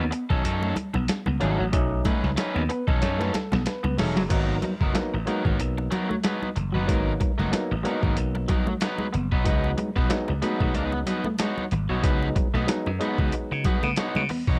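This funky, playful funk excerpt opens on a B9 chord at 93 BPM in 4/4, with a lightly swung sixteenth feel. A bright, picked, overdriven guitar comps with plate reverb, a twangy, fingered guitar at the edge of break-up plays a riff in the background with spring reverb, and a growly, amped slap bass sits up front. A lo-fi sampler-style drum kit joins almost at once, pitched down, muffled, tape-warm and compressed, with a thumpy kick, medium-tuned snare, hi-hat and crash, while close, dry congas with a thick skin sit quietly behind. Stabs from a stringy, mellow clav, overdriven through a combo amp and treated with plate reverb, arrive at 1.4 seconds. A clav fill and a drum fill lead into the second section at 4.3 seconds, where the harmony moves to G#m9 and later to C#9sus4. The production is dark and warm, with a light reverb.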